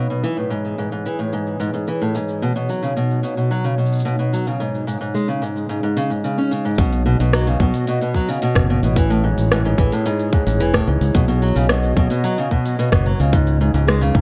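A dark, lightly reverberant production opens this playful, pastoral folktronica excerpt in B mixolydian at 110 BPM, where a boxy, up-front parlour steel-string acoustic guitar fingerpicks arpeggios with audible finger squeak through a low-pass filter and digital delay. Alongside it, a warbling, nostalgic lo-fi pad with 12-bit sampler grit and chorus holds slow-attack chords moving through Amaj7, Badd9 and C#sus2, while a filtered organic electronic kit of crisp hats, cabasa and rim click, re-recorded in a large room, ticks along. At 6.8 s a punchy, tube-saturated fingered electric bass and a tight electronic kick arrive together, giving the second section a firmer low end.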